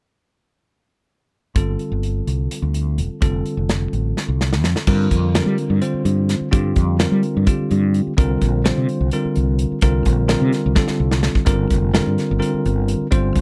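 Counted in a straight 7/8 at 255 BPM in eighths, this nocturnal, intense electric jazz fusion excerpt in G minor sets a bell-like tine electric piano over a round, dark fretless bass and a polished studio drum kit with a punchy kick and medium-tuned snare. The harmony moves from G9sus4 and Fadd9 into a longer passage on Gm7 and Csus2 beginning at 4.9 seconds, and the drums play fills at 4.2 and 10.8 seconds. The dry, close 1970s-style sound keeps all three parts up front, with the piano bright and clean, the bass amped, and the kit airy with small-room ambience.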